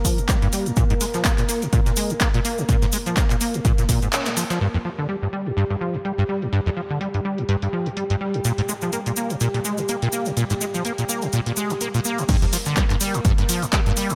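A squelchy, resonant sawtooth acid bass riff sits up front with tape echo and ensemble chorus, over a warbling, detuned, lo-fi pad of sustained chords that pumps against the beat in this raw, gritty, swung acid house excerpt. A punchy analog kick thumps until 4.0 seconds and returns for the drop at 12.3 seconds, while a tape-warm analog drum machine supplies crash, handclaps and low-pass filtered hi-hats. Beneath them sit a very quiet, pitched-up, compressed breakbeat kit re-recorded in a small room and a grainy, saturated cabasa that sits out the middle stretch from 4.6 seconds, as a filter sweep runs over the drums.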